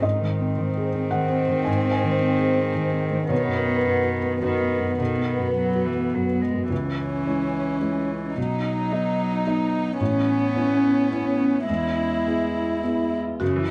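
A chamber violin section carries the melody with light vibrato, sul tasto bowing and tape echo over a soft, boxy felt-muted upright piano with audible action noise, while a rich, distant cello floats beneath as a second line in this melancholic, longing neoclassical excerpt in C# minor, a rubato 3/4 at 108 BPM recorded dry and close with light reverb, and at 13.4 s a buzzing, woody marimba sounds a brief F#4 in the background.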